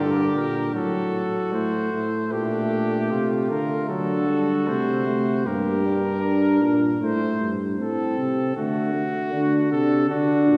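An up-front bass trombone with a vintage tone anchors this stately, joyful classical brass canzona fragment at 77 BPM in 4/4, beneath a warm trombone with light vibrato, a clear lead trumpet carrying the melody with light vibrato and a smooth top, and a second trumpet whose line ends at 7.0 s, all moving through imitative writing over harmonies from Gm to D and set back in a wet concert hall.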